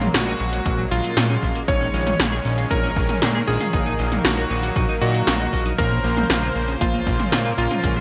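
Synthwave in a moody, nostalgic vein, this short cut sets a bright, clangy electric grand piano melody with digital delay over a soft supersaw holding sustained chords, a dark, clean electric guitar riff bathed in lush chorus and delay, and round, vibrato-tinged synth brass stabs sitting in the background. Underneath, a fat, saturated sawtooth bass anchors things while up-front 80s pad drums bring metallic hats and gated reverb on the snare and toms, joined by a punchy, tape-warm electronic kick from 0.7 seconds. The shifting chord movement and glossy digital ambience give it a polished 1980s-style sheen.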